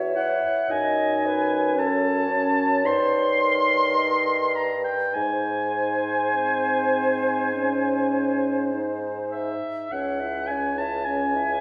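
A slow, romantic classical passage for wind quintet opens with flute, clarinet, French horn and bassoon sounding together, and the oboe joins at 0.2 seconds. The mood is yearning and melancholic, moving in a flexible, rubato 4/4. The airy concert flute carries the melody with vibrato and tongued notes, while the oboe, up front yet with a distant, roomy quality, sings a higher second line with its own vibrato. The dark clarinet sits in the background as accompaniment until it drops out at 9.3 seconds, and the warm French horn fills the middle of the texture. Beneath them the mellow bassoon holds the bass with light vibrato and a soft attack, and the whole fragment, cut from a longer piece, is wrapped in a wet recital-hall reverb that suggests a church or concert hall.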